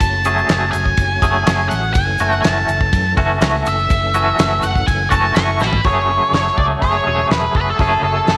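An octave-fuzz lead guitar sits up front in this hypnotic, mysterious psychedelic rock passage, its dark, distorted tone run through wah and tape echo as it plays a solo that lasts until 5.8 seconds. Just after the start, at 0.3 seconds, a clean, twangy electric guitar joins with a fingered riff coloured by tremolo. Beneath them, a round, amped fingered bass holds the low end, and a damped 70s drum kit keeps a straight pulse with a fat snare, tight kick, hi-hat, ride and toms, adding a fill at 5.6 seconds. In the background, a reedy tonewheel organ sustains chords through a slow rotary speaker and chorus vibrato, with audible key click. A grainy tube shaker is barely audible until it drops out near the close of the solo. The chords move from F#madd9 to A/F# and back to F#madd9 as a new section begins, all set in a light studio reverb, and the clip is cut from a longer piece.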